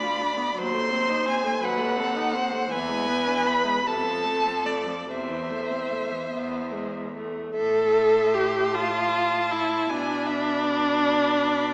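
Solemn and elegiac, this slow, romantic string quartet movement in A minor drifts in a rubato 6/8 at around 46-58 BPM, with a shift at 7.6 s that settles onto A minor. A rich, expressive first violin sings the melody high with vibrato and portamento over a smooth, lightly vibrato second violin line, while the viola sits close and up front with soft-attacked, sliding accompaniment above a clear, even cello bass. A wet concert hall reverb surrounds the quartet, though the sound has a small-speaker quality, and the recording is cut from a longer piece.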